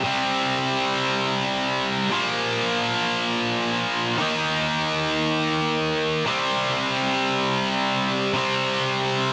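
This rock excerpt, cut from a longer piece, has a cinematic, melancholic mood and moves slowly at 58 BPM counted in dotted quarters, in a straight 6/8. A single tight, distorted electric guitar carries it alone from start to finish across its 9.3 seconds, picked and double-tracked, sitting up front with a bright edge and analog delay. Its playing spans Bb2 to Eb4, moving through power chords on C, Bb and Eb before returning to C at 6.3 seconds. The sound is set in light reverb with a digital ambience that gives the lone guitar a sense of space.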